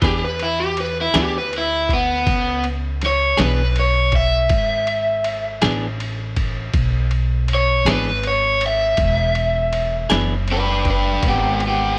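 A raw, overdriven garage guitar takes the lead, soloing through this laid-back, soulful slow blues in 12/8, its picked lines carrying a slapback echo. Beneath it, a clean, compressed electric guitar plays accompaniment on an E7 chord with tremolo until 10.3 s, while a woody, bright pizzicato upright bass sits up front and a muffled, pitched-down sampler-style drum kit adds a thumpy kick, a medium-tuned snare and ride cymbal. The dry mix keeps this fragment of a longer piece close and present.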